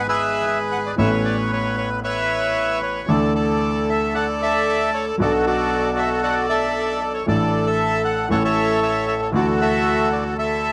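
Tango in D major, this short fragment of a longer piece moves at 115 BPM in 4/4 with a rubato feel, and its mood is nostalgic and passionate. A reedy, dark bandoneon carries the melody from start to finish, singing between F#4 and F#5 with a smooth, up-front presence. Beneath it, a concert grand piano supplies accompaniment across its full 10.7 seconds, reaching down to G#1 for a deep bass and giving off a vintage warmth. The harmony drifts from E/G# through Aadd9, Dsus2 and Bm7, moving to Asus4 before resolving to A and settling on Dadd9 at 9.3 seconds. Close, detailed microphones and light reverb keep both instruments intimate and near.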